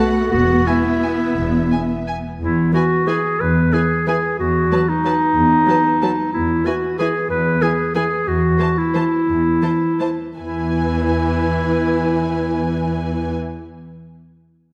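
Classical fragment in E major, sweeping and festive, moving in a rubato 3/4 at 153-201 BPM, where lush, smooth violin sections with vibrato carry the high melody while a second violin line sits in the background, a bright, vintage-toned solo clarinet plays its own second line up front, soft-attacked violas add an expressive accompaniment with portamento, a rich cello section holds the bass, the double bass section joins it only until 1.7 s, and the tempo slows from 7.8 s, the ensemble bathed in a wet scoring-stage reverb.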